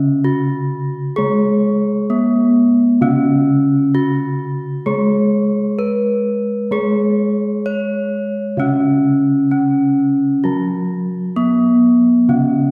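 Serene and shimmering, this gamelan excerpt moves at an unhurried 65 BPM in a straight 4/4. Two bronze metallophones play throughout. One carries the melody with a bright, full, close and dry tone struck with a horn mallet. The other supplies a lower accompaniment with a wooden mallet, its paired tuning producing shimmering beats in a boxy, warm sound. A concert-hall reverb places the listener further back in the room.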